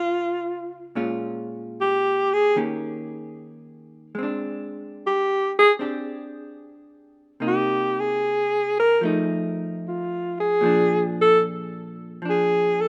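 A relaxed swung 4/4 at 75 BPM sets the pace for this intimate, tender jazz ballad in Bb major, cut from a longer piece and lasting 12.9 seconds. A breathy alto saxophone carries the melody as a solo from start to finish, its subtone voice colored by vibrato and a smooth top within a narrow range from F4 to Bb4. A dark, clean, picked electric hollow-body jazz guitar accompanies throughout, spanning Bb2 to G4 and sitting beneath the saxophone in level, though both parts are up front. The harmony drifts through rich chords such as Dbmaj7#11, Eb7 and Abmaj7#11 before moving through Cm7 and F7 to settle on Bb at 10.6 seconds. A moderate plate reverb gives the whole performance a soft, lingering glow.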